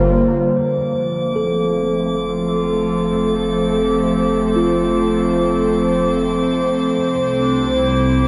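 An airy, breathy pad with chorus sits up front in this reflective, spacious ambient passage at 75 BPM in 4/4, tuned to A4 = 435 Hz, holding sustained chords over Gm7, F and C in a vast, echoing space. A mellow tine electric piano plays arpeggios through tape echo until 7.0 s, while a round, deep analog bass fades in beneath and a glassy harmonics texture with drifting overtones enters at 0.8 s. A distant clarinet, also fading in, carries a classical-style melody in the background from 1.0 s.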